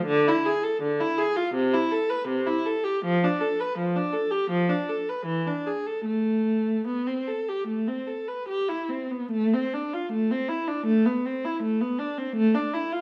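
In a flexible, rubato 4/4 pulse drifting between 70 and 83 BPM, this serene, radiant 13-second extract from a baroque-style classical suite movement in A minor features a single bowed viola, up front, warm and even with vibrato and a smooth top, ranging from C3 to B4 and ringing in the wet reverb of a stone room with a 1.0 s decay, its opening phrase giving way to a new idea at 9.3 seconds.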